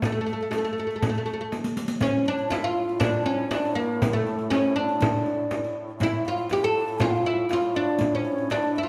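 Hypnotic and longing, this Arabic maqam ensemble piece in A maqam hijaz moves at 120 BPM in a straight 4/4, with a woody, plectrum-plucked fretless oud carrying the melody up front, a breathy, hollow ney tracing a second line above it, and a frame drum and dark-jingled riq played with hard hands, until a brief drum fill at 1.5 seconds leads into the next section, where a clear duduk drone with vibrato enters in the background at 2.0 seconds, all set in a recital-hall reverb within what is cut from a longer piece.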